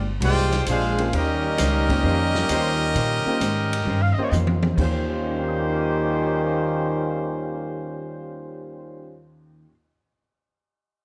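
A brassy, energetic stretch of big band swing in Eb major at 131 BPM opens on a Bb13 chord, with a bright, smooth-topped trumpet section carrying the melody up front over a dark, distant trombone line, a woody pizzicato upright bass and a very quiet, clean hollow-body electric guitar accompanying. A vintage drum kit with a tight kick and medium-tuned snare joins almost at once. A second trombone section adds warm, soft-attacked sustained chords with light vibrato, and a boxy, clear upright piano sits in the background from 1.0 s. The trumpets stop at 4.3 s as a drum fill arrives, and after that the trombones, bass, guitar and piano carry on under light reverb.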